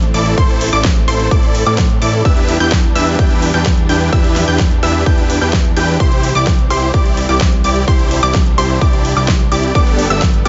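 A very quiet, rich bowed string section, a fat, saturated analog bass that pumps with sidechain, and a big-room drum kit with a huge snare and metallic hats open this emotional, euphoric cut from a festival progressive house track. Almost at once a lush, detuned supersaw riff and a punchy, decaying unison pluck playing high arpeggios join in, both pumping with sidechain and trailed by tape echo, and a punchy electronic kick lands up front from 0.4 seconds. The chords move from Am through Em7 and C to Gadd9 under light reverb, with the top end kept soft.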